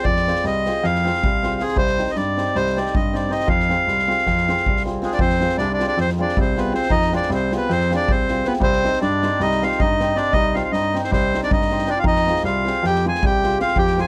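Balkan folk in a wedding-band style, this virtuosic, restless passage from a longer piece races along at 315 eighth-note beats per minute in 9/8, moving between F minor and C minor. A reedy, up-front accordion carries the melody over a shimmering hammered dulcimer, a dark, long-sustained grand piano bass and an airy street-band drum kit with a boomy kick and medium-tuned snare. A distant, roomy clarinet enters at 5.0 seconds with a second line in classical style, all captured with close, detailed microphones and light reverb.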